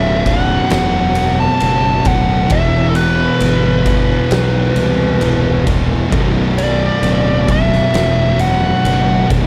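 Stoner and doom metal, sludgy and ominous, cut from a longer piece and moving with a straight pulse in 4/4. A fuzz lead guitar sits up front, compressed and distorted, carrying the melody through wah and tape echo. Beneath it, three thick fuzz guitars play the riff: one sits in the background, and two are very quiet, one of them bright and double-tracked. A growly, overdriven fingered bass anchors the low end. An oversized, low-tuned acoustic drum kit joins at 0.3 s with a boomy kick, fat snare and dark ride cymbal, its big, pumping room sound saturated and gritty. The harmony moves to a second chord at 2.5 s and returns home at 6.1 s, all set in a small room ambience.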